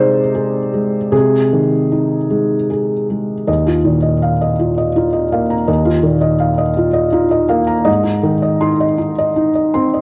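Intimate and tender, this brief cut from a longer neoclassical minimalist piano piece drifts at 51-55 BPM in a rubato 6/8, with a solo felt-muted upright piano sitting up front, mellow and soft with audible action noise and a cassette-tape grain, moving from Ab/C into Ebsus2 at 3.5 seconds and settling on Ab at 7.9 seconds inside a moderate spring reverb in a homespun cassette recording.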